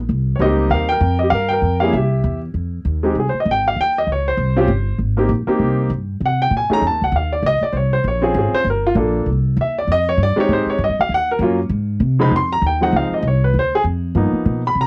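Swinging and smoky, this fragment of a jazz piano trio piece moves at a brisk 196 BPM in F minor, with a 60% swing on the eighth notes. A woody, pizzicato upright bass with steel strings sits up front from the start, joined at 0.4 s by a warm, natural baby grand piano that takes a solo from 2.5 s over rich harmonies such as Fm9, Abmaj9 and a closing G7alt. Light reverb and the soft grain of a cassette home recording give the pair an intimate, lived-in sound.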